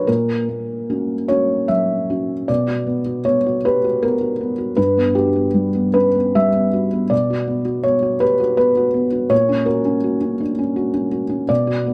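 A felt-muted upright piano opens on an F#/A# chord and plays solo throughout this intimate, reflective fragment of neoclassical minimalist music in B harmonic minor, moving in a slow, rubato 6/8 at about 49-55 BPM counted in dotted quarters. At 2.5 seconds a new section settles on B minor, passes through Gmaj7 and back to B minor, and returns to F#/A# at 9.3 seconds, with the piano ranging from G2 to E5. The thick felt gives the instrument a dark, mellow softness, and it sits up front in light reverb, close enough that the mechanical noise of its action is clearly audible.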